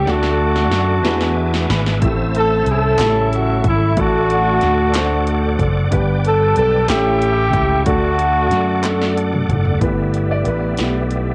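This slow, soulful gospel excerpt opens with a mellow horn section carrying the melody up front, its smooth, vibrato-tinged tone colored by cassette tape and analog delay, over a background grand piano, a reedy tonewheel organ holding sustained chords through chorus vibrato and a fast rotary speaker, and a bright, punchy slap bass shaped by an envelope filter. A punchy analog drum machine with kick, snare, hi-hat and toms comes in at 0.1 seconds with a fill, its tape-warm sound re-recorded in a small room. The hopeful mood moves at 62 BPM in a straight 6/8, in G major, through chords from D and E7 to Am, A7, D/A, G and A7 and back to D. Hollow group handclaps sit in the background from 3.0 to 9.1 seconds, and piano fills join the drum fills near the start and again before a brief new section at 9.8 seconds. There the horns give way to a very quiet French horn section holding classical-style chords on G6 while the piano takes a short solo. 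The whole home cassette recording is dry, with little room sound.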